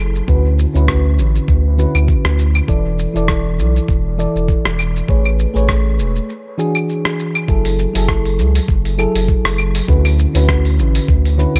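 Warm and smooth, this sunset chillout excerpt moves at 100 BPM in 4/4, with a swung sixteenth-note feel in F# minor. A mellow FM electric piano carries the harmony, its soft, rounded tone edged with a noise layer, a chorus shimmer and trailing dub echo, while its notes strike quickly and then decay. Underneath, a deep analog bass with a dark, sine-like body sits up front and holds its notes. A dusty, sampler-style soul kit of claves, hi-hat, rim click and shaker joins at 0.2 seconds, compressed and gritty with a tape-like grain, and a thumpy electronic kick enters just after. The chords drift from Dmaj13 through E7sus4 and Amaj9 to an E9 break at 6.3 seconds, then settle into F#m9 and return to Dmaj13, all within a lightly reverberant, echo-heavy mix.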